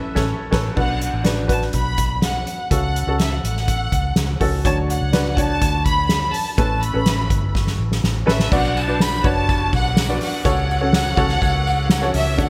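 A straight, driving 4/4 pulse at 124 BPM anchors this bittersweet, piano-driven pop clip in B minor, opening with a band accent and moving through chords like Bm, F#m and Dmaj7, where a soft-mallet drum kit with a fat snare, boomy kick and dark cymbals sits up front beside a round, punchy, foam-muted electric bass. A woody, slightly detuned upright piano with subtle chorus carries the accompaniment while a lush, bowed violin section sings the melody high in its range with smooth vibrato. After a drum fill near 8 seconds, a jingly tambourine joins in the background at 8.5 seconds, all within light reverb and a bright 1980s-style digital production.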